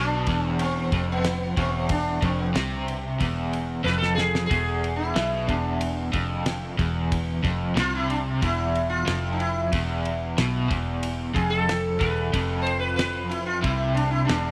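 A buzzing, shimmering sitar with tape echo plays a solo up front across this 14.5-second cut from a longer psychedelic rock piece, trippy and dark in E phrygian dominant at 92 BPM in a straight 4/4. Beneath it, a crunchy, double-tracked overdriven guitar with tremolo pushes a low riff, while a round, foam-muted fingered bass holds the bottom. A damped 70s drum kit with a fat snare, tight kick and dark ride cymbal enters at 0.3 seconds and adds a fill around 3.9 seconds, all set in light reverb and small room ambience.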